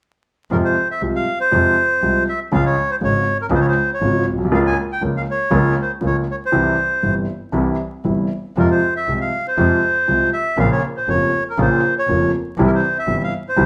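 Tango at 120 BPM in F harmonic minor with a passionate, tense rubato feel, where a reedy, dark bandoneon carries the melody up front over an intimate grand piano with audible action noise and long sustain, while one bowed double bass adds a focused, boxy line with vibrato, the band playing live together in a large studio room with moderate reverb and vinyl crackle through this brief cut from a longer piece that moves through Fm, Db, Bbm and C.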